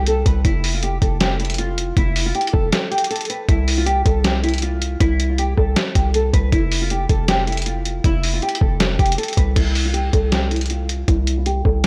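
A nylon-string guitar and a hard-hitting 808-style bass open together in this dreamy, triumphant trap piece, cut from a longer work and set in a half-time feel. The thumb-plucked guitar carries the melody in a narrow range, its fresh-stringed acoustic tone softened by analog chorus, a low-pass filter and analog delay. Beneath it, the 808 sits low and heavy, a punchy sine tone with a noise layer and a fast, decaying attack, placed up front. A lo-fi sampler-style drum kit of thumpy kick, medium-tuned snare, hi-hat and crash sounds compressed and muffled, as if re-recorded in a small room, and the kick briefly drops out between 2.7 and 3.5 seconds. From 9.6 seconds a new section begins with a filter sweep on the guitar, all inside light reverb and a digital ambience.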